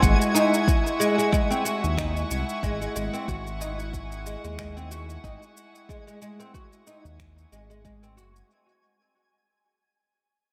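An echo-heavy, spring-reverbed excerpt of hypnotic, meditative organic downtempo at 92 BPM with a light 16th-note swing, where a woody, double-strung oud plays arpeggios through 12-bit sampler grit and analog delay over sustained, sidechain-pumped chords from a reedy, gut-string chamber section, a dark, sawtooth-and-triangle synth bass with vibrato, a deep up-front electronic kick, tape-echoed shaker and finger snaps, and a twinkling granular shimmer in the background, all opening on an F#5/G# chord and fading out across the 8.5 seconds.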